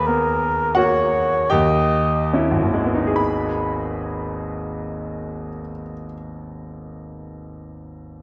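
A melancholic, elegiac Romantic classical fragment in G# minor and 3/4, taken from a longer piece at a slow, rubato 34-45 BPM, in which a mellow cor anglais sings a brief melody with light vibrato over a bright, brilliant baby grand piano with long sustain, slowing through D#sus4 and D#7b9 harmony until the horn falls silent at 2.3 seconds and the up-front piano resolves to G#m at 3.2 seconds, carrying on alone until 8.2 seconds in the dark, wet ambience of a recital hall.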